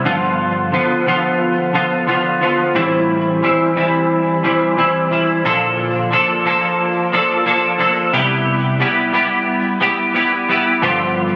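Indie pop in C major at 89 BPM with a gentle 16th-note swing, this sunny, hazy excerpt features a single semi-hollow electric guitar playing alone from 0.0 to 11.4 seconds through G7, Am7, Bbmaj7 and Cmaj7 before returning to G7. The picked guitar sits up front with a bright, clean, compressed hollow-body tone, colored by ensemble chorus, vibrato and tape echo. Captured on a phone in the room, it carries a light club reverb.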